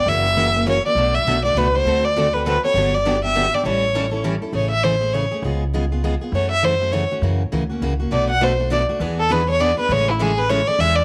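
A swinging 3/4 pulse at 201 BPM drives this charming fragment of acoustic string swing in the jazz manouche style, settling into A major from 4.5 seconds over a run of seventh chords. Up front, a rich, focused bowed violin sings the melody with vibrato and a smooth top, stepping into a solo at 4.5 seconds, while a full-bodied jumbo steel-string guitar picks the accompaniment and a thumpy, woody upright bass with gut strings anchors the low end. A boxy parlour guitar with audible finger squeak sits in the background, dropping out after 4.3 seconds and returning at 8.1 seconds, all framed by light reverb and small-room ambience.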